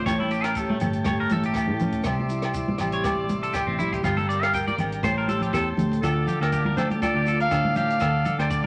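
A lightly swung 121 BPM highlife groove in D minor, bittersweet yet danceable, rides on a dry cocktail drum kit with a punchy kick, ringing agogo bells, grainy maracas, damped high-tuned congas and a round, dark fingered bass, while a full-bodied fingerpicked steel-string acoustic guitar and a buzzy, overdriven combo organ in the background hold the harmony, a bright, twangy clean electric guitar with spring reverb takes an up-front arpeggiated solo until 6.0 seconds, and a breathy jazz-style clarinet with light vibrato then carries the melody in a wet room dusted with vinyl crackle.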